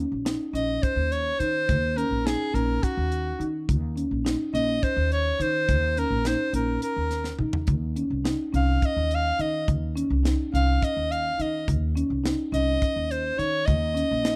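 A bright, close-miked soprano saxophone carries a classical-style solo melody with vibrato and a soft attack over a growly, woody pizzicato upright bass, smooth rosewood marimba arpeggios and a dry, tight funk drum kit with a high-tuned snare in this intricate, driving progressive instrumental excerpt in 7/8 at 210 BPM (eighths) in Eb dorian, with a drum fill at 7.2 seconds and light reverb on a dark, warm production.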